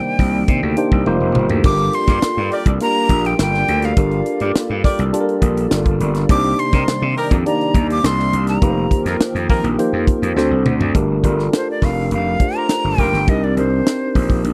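A tight funk drum kit with a high-tuned snare and a growly, overdriven slap bass drive a straight 4/4 groove at 103 BPM in this polished, nocturnal 1980s jazz-funk pop passage in G minor, with drum fills marking the section changes. A clean tine electric piano provides accompaniment beneath a breathy, chiffy jazz flute melody touched with slapback echo, while a hollow, detuned pad hums in the background until 10.9 seconds and a mellow horn section with light vibrato adds a second line from 2.1 seconds. The flute takes a bittersweet closing solo over Gm7 and Cm7, set in a dry, close studio sound.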